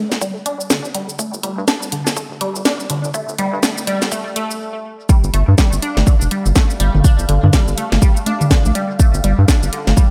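Minimal techno at 123 BPM with a hypnotic, cool mood and swung sixteenths, where a punchy kick, cracking snare, hi-hat and shaker drive a rubbery, nasal square bass with sidechain pumping and a squelchy, resonant blip pluck whose filter sweeps through the build-up, which ends in a stop from 4.6 to 5.1 seconds before the drop brings in tape-echoed congas and toms in the background and a flickering, grainy texture from 5.9 seconds, all in an echo-heavy mix with light digital ambience, cut from a longer piece.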